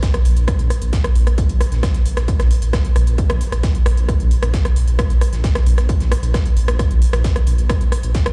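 Relentless and intense, this driving peak-time techno cut runs at 133 BPM in a straight 4/4, built on a heavy, up-front electronic kick and a deep, rumbling detuned saw bass that sits on Bb1, its dark, beating tone thickened by tube saturation and sidechain pumping. A layered techno kit adds smooth pumping hi-hats and rim clicks, while a gritty sampler-style breakbeat kit with filtered hi-hats and a medium-tuned snare stays in the background. The whole short excerpt sounds as if played on a big sound system in a bare room, and the kick and techno kit carry a tape-warm, small-room character.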